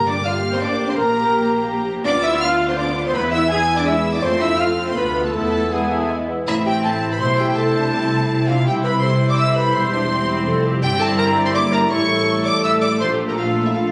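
Captured on a phone in the room with club reverb and compression, this stormy, restless classical-period orchestral excerpt in A minor moves quickly at 165 BPM in 3/4: a rich, vibrato-laden violin section carries the melody over a dark, distant clarinet, a mellow flute ensemble and a very quiet, floating second violin line. Intimate violas, background cellos and a pure double bass section underpin the harmony, while a horn section sustains smooth chords, loose trumpets add roomy stabs and a lone bassoon surfaces briefly at 5.7 seconds.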